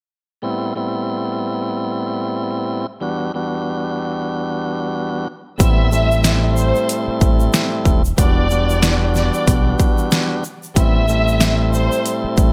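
A swung 4/4 groove at 93 BPM drives this dark, moody boom-bap hip-hop excerpt in A dorian, which opens with a lightly overdriven tonewheel organ alone at 0.4 s, its key click and vibrato coloring Am7 and Em7 chords through a cassette-tape haze. At 5.6 s a punchy, overdriven electronic drum kit with metallic hats and a deep snare arrives up front, joined by a round, dark fingered electric bass and a grainy tube shaker tucked in the background. Above them, a lush, bowed violin section carries the expressive melody until 12.2 s, all set in light reverb.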